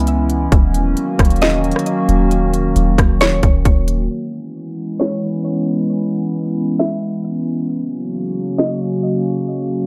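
A hazy, lightly reverberant haze with a low-pass filtered softness colors this short cut from a longer piece of atmospheric cloud-rap, moving at 134 BPM in a half-time 4/4 feel in C# dorian with a melancholic air. A warbly, detuned tape-like pad sits up front for the full length, holding nostalgic sustained chords that drift between C#m7 and D#m7, breathing with sidechain pumping under its chorus and built-in reverb. Above it, a woody, mallet-like FM pluck with a noise layer traces a small melody between C#5 and E5, its vintage tone softened by a low-pass filter and trailed by tape echo until 9.0 seconds. A trap kit of hard-clipped kick, sharp snare, crisp hats and rim click drives things up front, while a deep, round 808-style sine bass anchors the low end before dropping away at 4.1 seconds. From there a break with a filter sweep takes over, the chords returning to C#m7 and settling on a rootless D#m7 as the drums fall away at 8.7 seconds.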